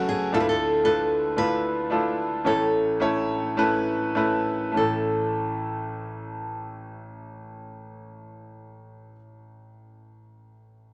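A clear, smooth grand piano sits up front in a modest small-room ambience, spreading from deep bass up into the middle register beneath a bright, fingerpicked nylon-string guitar whose fresh strings carry audible finger squeak. This tender, emotional pop fragment, cut from a longer piece, moves at a slow 50-59 BPM in 4/4 and slows down over its opening 4.8 seconds as the harmony passes from Dmadd9 to A. The classical-toned guitar keeps its melody in a narrow range between G#4 and B4 and drops out at 9.2 seconds, while the vintage-sounding piano continues until 10.9 seconds.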